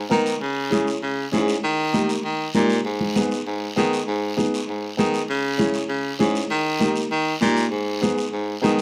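Passionate and danceable, this brief cumbia cut from a longer piece moves at 197 BPM in G# harmonic minor, cycling through C#m, D# and G#m. A bright baritone saxophone with vibrato carries the bass line up front from the first moment, while a woody, slightly detuned upright piano with audible action noise and thick-skinned congas, both touched by slapback echo, enter at 0.1 seconds alongside a raspy guiro set lower in the mix. The sound is dry and open-air, with little reverb.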